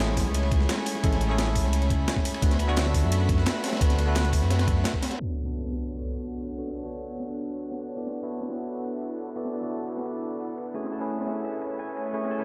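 A bell-like tine electric piano with subtle chorus and delay and an airy, breathy pad pumping behind it open this dreamy, lush liquid drum and bass excerpt at 173 BPM in B dorian, riding a deep, rumbling detuned saw bass, a thumpy, gritty electronic kick and two breakbeat kits, one sampler-style with a medium-tuned snare and a darker, saturated one with a high-tuned snare and rolled-off cymbals. An up-front electronic impact lands at 5.2 seconds as the bass and first kit fall away and a filter sweep runs over chords moving from Bm9 to E9sus4, leaving the darker kit, piano and pad. A ringing, fingerpicked Celtic harp enters at 10.7 seconds with arpeggios in a diffuse ambient delay, all bathed in huge ambient reverb.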